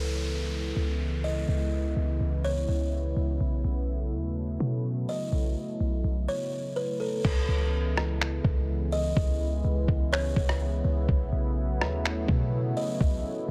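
Hazy and spacious, this atmospheric cloud-rap excerpt in C# minor moves at 125 BPM with a half-time feel, as a detuned sawtooth pad with chorus and sidechain pumping sustains C#m7 and B9sus4 chords over a boomy sine 808-style bass, an electronic downlifter sounds until 3.4 s, a woody, buzzing kalimba with tape echo carries the melody from 1.2 s, and a muffled, pitched-down sampler-style drum kit with thumpy kick, rim click, finger snaps and crash cymbal arrives up front at 7.2 s in a dry mix.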